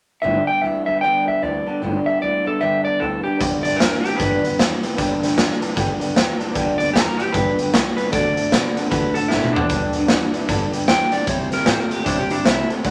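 A raw garage drum kit bursts in up front at 3.4 seconds, its punchy kick, medium-tuned snare, hi-hat and toms sounding saturated and gritty with a rolled-off top in a bright, pumping stone room, and it drives a short fill at 9.3 seconds. This is an upbeat, retro rockabilly excerpt in G major, swinging at 152 BPM in 4/4 and moving through G, D7 and C. Carrying the melody is an up-front, dark, fingered electric guitar through a small old amp. A second slightly broken-up electric guitar through a small old amp plays a bright, twangy picked riff down low. A very quiet jumbo steel-string acoustic guitar adds full-bodied picked accompaniment. Behind them sit a woody, thumpy upright bass with gut strings played pizzicato and a mellow, boxy upright piano, all within a moderate studio reverb.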